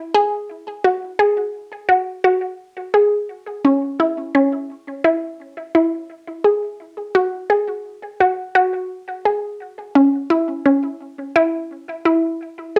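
Driving and intricate, this straight 9/8 fragment of a progressive instrumental in C# minor runs at 171 BPM counted in eighths, carried entirely by a solo squelchy, resonant blip pluck from 0.1 s, sitting up front between C#4 and G#4 with a fast attack, short decay, phaser and tape echo, moving into a new section at 3.6 s, all within a moderate studio reverb on a home cassette recording.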